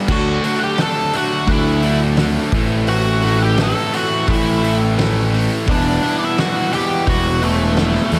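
A lush hall reverb gives this short cut from a longer quiet-loud alternative rock track a big arena sound, with a cathartic, angsty mood. At 86 BPM in a straight 4/4 and rooted in A dorian, it moves from D at 0.1 seconds to Am at 2.5 seconds and then to Emadd9 at 5.7 seconds. Up front, a fuzz-drenched octave lead guitar carries a shadowy, distorted melody with slapback echo, while a punchy, fuzzy picked bass drives low beneath it. Three rhythm guitars play riffs farther back: a bright, crunchy overdriven part with its own slapback echo, a very quiet, scooped and double-tracked distorted guitar, and a murky, compressed overdriven guitar barely audible in the mix. A loose, roomy indie drum kit sits at a distance, with a fat snare, a thumping kick, hi-hat and dark crash cymbals under a rolled-off top.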